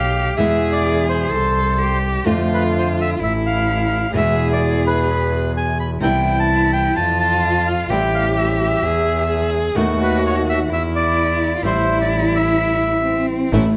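A rubato tango in 4/4 at 128 BPM and in A minor, this passionate, dramatic excerpt sets a reedy, dark bandoneon melody up front over a close, bowed cello second line with soft attack, vibrato and expressive portamento, a clear, intense bowed double bass with vibrato, and a dark, fingerpicked flamenco guitar accompaniment entering at 0.4 seconds. The harmony moves through chords such as Cmaj7, Am7 and B7/D# before a break at 13.1 seconds, after which a lush symphonic string section adds brief bowed stabs at 13.5 seconds. A moderate recital hall reverb gives the ensemble a sense of space.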